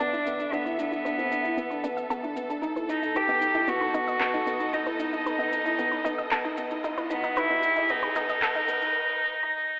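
A reedy, gut-toned solo cello carries the melody up front through this melancholic, hypnotic piano-and-strings electronica excerpt, set over lush bowed string-section chords, a soft felt-muted upright piano riff with audible action noise, a nasal analog pluck arpeggio under a filter sweep in the background, and electronic shaker and handclaps, as the whole passage builds and a riser joins at 5.8 seconds, all heard through a thin, telephone-like filter and a wet echo-chamber reverb.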